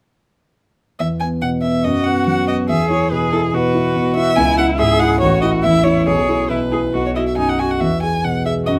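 Spirited and lively, this brief cut from a longer piece is a quick classical-period movement for piano trio in E major, moving at 142 BPM in a straight 4/4. The violin carries the melody from 1.0 seconds, its bowed tone clear and focused with vibrato, sitting close and up front. A concert grand piano enters at the same moment as accompaniment, warm and natural with a deep bass, also placed up front. The cello joins at 1.8 seconds with a bowed second line in a narrow upper register, its vibrato-shaded sound smooth at the top. The harmony moves from E through C#m, A and B before settling back on E by 7.8 seconds, all within a moderate studio reverb that gives the trio a sense of space.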